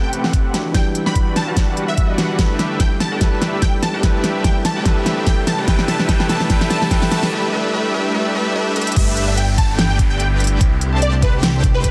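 A huge, detuned supersaw riff drives this playful, euphoric future bass cut at 146 BPM in G major. A catchy, punchy unison lead, a bell-like tine electric piano until 7.3 seconds, very quiet bowed strings, a fat analog bass, a knocking kick and a pop kit with crisp hats all build under a filter sweep and faint risers before the drop lands at 9.0 seconds, where a lush wave-folded pluck arpeggio joins in the background.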